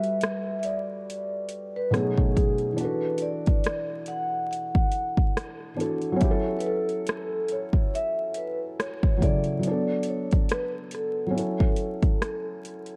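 Nostalgic and hazy, this lo-fi hip hop excerpt drifts along a relaxed, swung 16th-note feel in 4/4, opening on a brief break that lasts until 1.1 seconds. A vibraphone played with soft mallets carries the melody, its ringing, metallic tone softened by a slow motor vibrato and an analog delay, and it falls away at 12.6 seconds. Beneath it, a felt-muted upright piano supplies intimate, mellow accompaniment with audible action noise that gives it a vintage character. A house drum kit sits up front with a punchy kick, metallic hats and rim clicks, sounding electronic, layered and tape-warm. The harmony moves from Gmaj9 through B13 and E9sus4 before settling into F#m7 and Bm7/F#. Light reverb, a dark production and vinyl crackle wrap the whole piece in a dusty haze.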